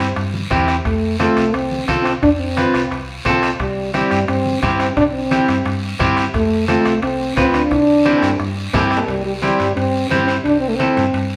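A dark, classical-style French horn carries the melody up front from the start over a twangy, slightly broken-up electric guitar and a round, punchy hollow-body bass. A close, raspy guiro enters just after, along with ringing timbales, low-tuned congas and a soft-beater bombo in the background of this joyful, festive cumbia excerpt at 175 BPM in C major, played live by the band in a wet stone room. A drum fill runs from 7.7 to 9.1 seconds, after which the bombo stops as the section repeats.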